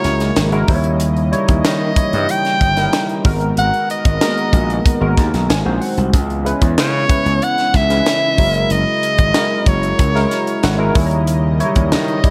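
Polished 1980s jazz-funk pop at 94 BPM in a straight 4/4, this short excerpt cut from a longer piece carries a bittersweet, urban mood. A clear soprano saxophone leads up front with vibrato, scooped notes and a smooth top, singing a pop-style solo line between C#5 and G5. Underneath, a gritty slap bass punches with bright, amped overdrive, while a tight funk drum kit sits forward with a high-tuned snare, a compact kick, hi-hat and gated reverb in a small room. A worn, slightly out-of-tune tine electric piano, lightly overdriven through a combo amp with analog chorus, accompanies throughout and adds brief fills at 5.2 and 10.3 seconds. Behind it all, a warm, detuned sawtooth pad with a soft attack and long release holds chorused chords in the background as the harmony moves through rich ninth and altered dominant chords such as F#9, D#7b9 and G#m9.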